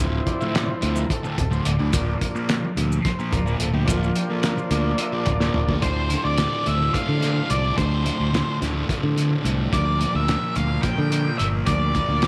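A buzzy transistor combo organ with heavy vibrato opens this trippy, mysterious psychedelic rock passage, taking a solo of sustained chords over Dm7 and Bb/D. Beneath it, a thick, double-tracked fuzz guitar with phaser plays a riff in a straight 7/8 at 216 BPM in D minor, while a fingered electric bass with transformer saturation sits up front. A lo-fi, cloth-damped drum kit with a fat snare, tight kick and muffled top thuds along, and grainy maracas shake quietly in the background through the first half. A drum fill at 5.4 seconds leads to 5.8 seconds, where an up-front octave-fuzz lead guitar with slapback echo takes over the melody in a high register as the chords move from Dm7 to Bb. A light reverb and small room ambience give the whole piece a close, gritty vintage character, and it is cut from a longer piece.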